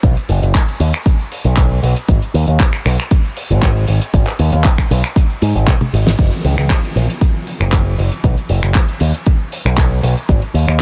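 A punchy, up-front electronic kick, a bright envelope-filtered picked electric bass and a dry, damped 70s drum kit with a fat snare, finger snaps, handclaps, hi-hat, shaker and toms drive this excerpt of a groovy, sensual nu-disco piece at 117 BPM in G# minor with a drop, until a drum fill at 5.7 seconds and a band accent at 6.1 seconds carry the groove into its next section, set in light reverb.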